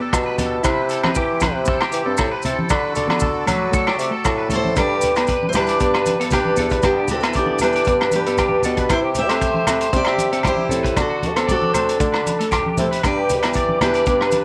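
A straight 4/4 groove from a vintage drum kit with a punchy kick, rim click and hi-hat drives this sunny, carefree highlife guitar band excerpt, joined by thick-skinned congas, ringing agogo bells in the background and grainy, dry maracas. A mellow bassoon carries the bass line with light vibrato. A twangy, slightly broken-up electric guitar plays arpeggios with chorus and slapback echo, a dark, clean electric guitar accompanies quietly with analog chorus, and a reedy, airy accordion holds sustained chords until 4.7 seconds. At 4.5 seconds a bright, picked steel-string acoustic guitar takes the melody, with finger squeak and slapback echo, while a warm pop-style trumpet adds a second line in the background, all in light small-room reverb.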